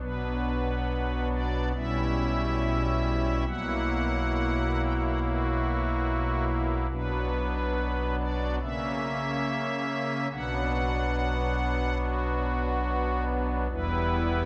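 A pipe organ on soft, shimmering string and celeste stops carries this grave, solemn classical chorale alone, sitting up front with romantic voicing across a range from E1 to G5. In B minor at a rubato 70 BPM in 4/4, with A4 tuned to 439 Hz, the harmony moves from Bm through C#dim/B and F#7/B, returns to Bm, and reaches Em at 13.7 seconds. A wet church reverb with a 3.2-second decay surrounds the organ in this 14.5-second passage cut from a longer piece.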